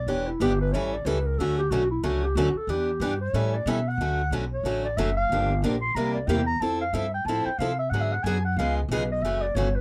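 A breathy clarinet carries the solo across this short cut from a longer jazz manouche tune, its dark subtone, gentle vibrato and scooped notes sounding distant, roomy and whispered, yet intimate. The feel is lively and swinging at 183 BPM in 4/4 with a 61% eighth-note swing, set in D major. Underneath, a pizzicato upright bass with gut strings sits up front, woody and thumpy. A picked steel-string parlour guitar provides the accompaniment, also up front, bright and boxy with fresh strings and audible finger squeak. The harmony cycles through Em7, A7 and Dmaj7 before shifting to Gm7, C7 and Fmaj7, and closes on F#m7 at 9.2 seconds. The sound is a dry, close 1970s-style studio recording with light reverb.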